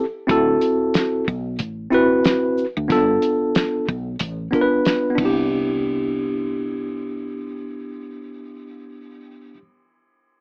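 Smooth and warm, this jazz-hop excerpt from a longer hip hop piece sits at 92 BPM in 4/4 with a loose 16th-note swing, centred in C major. A worn, slightly out-of-tune tine electric piano carries the accompaniment from the very start, clean and up front in a plate reverb, moving through D9, a rootless G9 and then Cmaj7 at 5.2 seconds. A woody, hollow-bodied fretless electric bass joins at 0.3 seconds, sitting low and soft with a subtle chorus. The cloth-damped drum kit enters with the bass, a thuddy, dry set with a fat snare, tight kick, dark cymbals and a rolled-off top, mixing hi-hat, ride and shaker, and it drops out at 5.4 seconds, just before the second section begins. The whole recording has a moderate studio ambience and an AM radio colour, leaving the electric piano and bass to carry the close.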